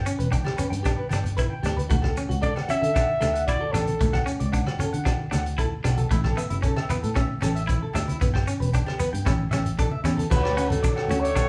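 A straight 4/4 groove at 114 BPM drives this danceable highlife guitar band in D major, with a vintage acoustic drum kit up front: a punchy kick, hi-hat, rim click and crash, its top rolled off. A round, dark fingered electric bass carries the low end, while in the background grainy maracas, ringing band-limited agogo bells and bright, low-tuned congas struck with hard hands fill out the percussion. Two clean, picked, compressed and twangy electric guitars share the middle: one warm guitar plays accompaniment, and a brighter one plays arpeggios higher up, colored by tremolo. A dark trumpet takes the jazz-style melody up front with light vibrato, soft attacks and scooped notes, first entering at 2.4 seconds and returning at 10.3 seconds, where a distant, roomy alto saxophone joins it on a second line. The chords move through G, D, A and back, and the whole band sounds like it is playing live in one room, with a moderate studio reverb around it.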